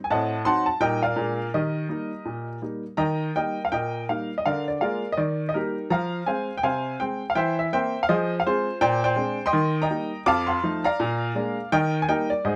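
This is a stride jazz solo for upright piano, swinging and playful at 165 BPM in Eb major, with a lilting swung eighth-note feel across a 12.6-second cut from a longer performance. The piano is woody and intimate, with its action noise audible, and it sits up front in light reverb, ringing with long sustain across a span from F2 to D6. After an opening phrase built on diminished and dominant color, a new passage arrives at 3.0 s and moves through Fm, C7/E and Bb13 before settling back on Eb.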